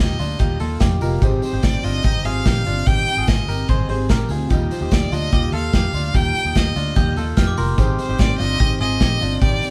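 Jangly indie pop with a youthful, breezy mood at 146 BPM, this cut from a longer piece sets a rich, smooth violin melody with vibrato over chords moving between Ebadd9 and Abmaj7, while a twangy, compressed clean electric guitar plays arpeggios and a picked jumbo steel-string acoustic guitar, finger squeaks and all, plays in the background. A dark, woody, slightly detuned upright piano adds a fill at 0.6 seconds, and a foam-muted, round electric bass sits under a tight, smoothly rolled-off drum kit and a distant, jingly tambourine. A sparkling glockenspiel struck with brass mallets rings out briefly at 7.0 seconds, and the band sounds live in one room with moderate reverb and a layer of vinyl crackle.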